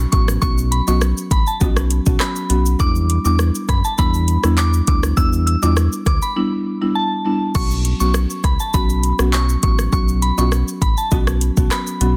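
The recording is dense and heavily limited, set in a digital ambience, and this short cut from a longer dancehall piece feels tough and bouncy in a straight four. A round, dark analog bass sits up front, its detuned tone blending sawtooth, sine and triangle into a sustained low end. An electronic afro-pop drum kit drives the groove with a deep kick, metallic hats, handclaps, rim clicks, shaker and crash cymbal, with soft clipping on the snare. A buzzing marimba played with medium mallets adds woody, dry, airy accompaniment from hardwood bars, while a soft FM synth bell carries a pure, mellow melody high above, treated with chorus and tape echo. Bright acoustic egg shaker and timbales struck with hard hands sit in the background. The harmony moves from Bsus2 to Em7 and back, with a brief break between 6.4 and 7.6 seconds before the opening section repeats.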